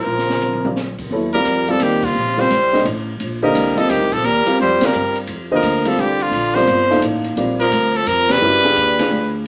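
Spiritual and open, this brief modal jazz excerpt swings briskly at 173 BPM in 3/4, rooted in Eb lydian and cut from a longer piece. A clear trumpet with light vibrato carries the melody up front, while a growling tenor saxophone, raspy and gritty with subtone and scooped notes, shapes a second line beneath it. A baby grand piano accompanies with an intimate tone, its short sustain and audible action noise giving it a close, human presence. Pizzicato upright bass adds a woody, thumpy foundation, and the open drum kit, with dark cymbals, a high-tuned snare and a boomy kick, contributes an opening fill in the first second. The harmony moves from Eb69 through Bb to a tense G7b9, punctuated by band accents at 2.0, 4.8 and 8.2 seconds. The live-in-one-room feel is heard through a wet studio ambience and a small-speaker character.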